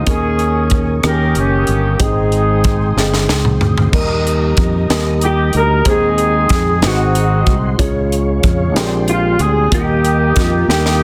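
Slow gospel in a straight 6/8 at 62 BPM, reverent yet jubilant, with a soft-attack vintage horn section carrying the melody up front over a boxy, dark grand piano, a flute-like tonewheel organ with slow rotary and chorus vibrato in the background, and a punchy fingered electric bass. An airy, polished drum kit with a high-tuned snare and punchy kick drives the groove, playing fills around 3.0 and 10.7 seconds as the chords move from Eb7sus4 through Abmaj7, Db and Bb13 back to Eb. At 5.3 seconds a clean, compressed electric guitar with ensemble chorus joins the melody in the background, all set in a small room with light reverb and a dense, heavily limited master.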